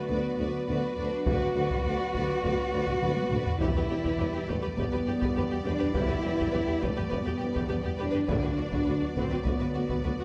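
A moderate scoring-stage reverb surrounds this dramatic, relentless epic orchestral film-score excerpt, where bowed violin sections carry a smooth, lightly vibrato melody and a lush, expressive second line over violas in the background and an up-front cello section on the bass. Dark French horns sustain chords from a distance, while a very quiet, clear tuba and woody double basses deepen the low end. A distant taiko ensemble played with hard sticks drives in from 1.3 seconds and adds a fill at 3.0 seconds, and very quiet, round timpani strike briefly at 3.6 seconds as the harmony moves to Em7.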